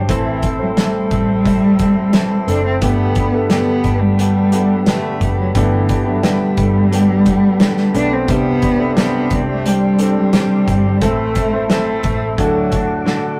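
A bowed cello carries the melody up front, its soft attack, vibrato and portamento giving the line an expressive, singing quality in this hopeful, uplifting piano-driven pop excerpt in a straight 4/4. Beneath it, a bright concert grand piano sits in the background with audible action noise, deep bass and long sustain, while a tonewheel organ holds sustained chords, lightly overdriven through a slow rotary speaker with a touch of key click. A clean, direct-recorded electric guitar plays a compressed, picked riff, and a vintage foam-muted electric bass adds a dark, round low end. A loose indie drum kit with a punchy kick and medium-tuned snare sits up front in a small, pumping room, rounding things off with a fill at 13.1 seconds. The harmony moves from Am through Gadd9 and Csus2 back to Am before landing on D, all captured in a rough rehearsal-room recording with saturation and a short, wet booth ambience.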